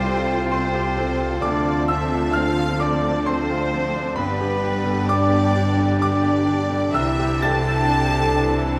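Moving and tender, this cinematic excerpt in C major unfolds at a rubato 65 BPM in 3/4, with a lush, focused violin section carrying the melody over second lines from an airy silver flute, a distant oboe, a bright vintage clarinet and a very quiet, smooth-topped second violin section, while a brilliant grand piano and a warm viola section accompany, a mellow French horn section holds sustained chords, a ringing thumb-plucked concert harp spins arpeggios, and rich cello and double bass sections ground the bass, moving from Fadd9/C through Dm7 and G to Cadd9 within a wet scoring-stage reverb.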